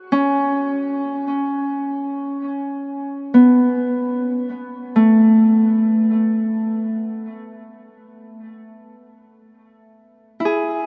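Floating in free time, this serene, reflective ambient fragment, cut from a longer piece, features a solo acoustic Celtic harp, fingerpicked and up front from 0.1 to 10.9 seconds between A3 and G#4, its ringing, warm tone trailed by a diffuse ambient delay. A huge, wet reverb with an 8.0-second decay bathes the harp as it rests on Aadd9 before moving to E at 9.2 seconds. The tuning sits at A4 = 441 Hz.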